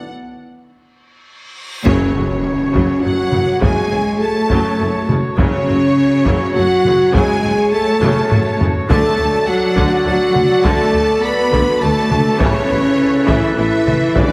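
Epic orchestral film score in a relentless triple metre, this short cut from a longer piece opens with a dark French horn section and a woodwind section holding sustained chords beneath a smooth, vibrato-laden violin melody set back in the mix. A huge, dark reverse cymbal rises into an impact at 1.9 seconds, where the full orchestra lands on an accent and a brief stroke of close timpani marks the arrival. From there, distant taiko drums struck with hard sticks drive the music forward, while a second, focused violin line joins the first and lush bowed violas, close cellos and a double bass section fill out the lower strings. A mellow, very quiet tuba adds weight to the bass, and a taiko fill around 8.0 seconds pushes the harmony onward to its later chords. The sound is drenched in scoring-stage reverb yet heavily compressed, giving the dense ensemble a loud, radio-like punch that ends on a final impact.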